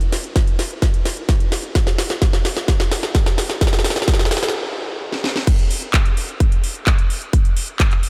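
EDM excerpt at 129 BPM in straight 4/4, anthemic and powerful, where a house drum kit of crash cymbal, handclaps, metallic hats and a cracking snare sits up front with a punchy, tape-warm electronic kick entering at 0.4 seconds, building through drum fills and a stop before the drop lands at 5.5 seconds, all bathed in a huge, dreamy ambient reverb.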